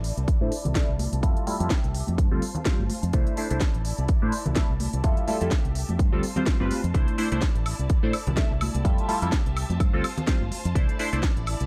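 A filtered disco house groove opens with a lush, distant violin section holding sustained chords, a foam-muted fingered electric bass and a house drum kit of cracking snare, crisp hats and woodblock, all pumping under a filter sweep that runs through the whole 11.7 seconds. Tambourine and congas sit close, dry and ringing in the background, struck with hard hands. A punchy electronic kick lands up front at 0.3 seconds, and a funky sawtooth polysynth comp follows at 0.4 seconds, its fast-attack chords coloured by chorus, phaser and a cassette tape grain. At 126 BPM in 4/4 with a light sixteenth-note swing, the feel is joyful and feel-good, cycling through C6/9, Fmaj9 and G9sus4 in C major. The intense, vibrato-rich strings float over the direct, amped bass, while the production stays dark and dry, with only the kick and kit touched by studio reverb.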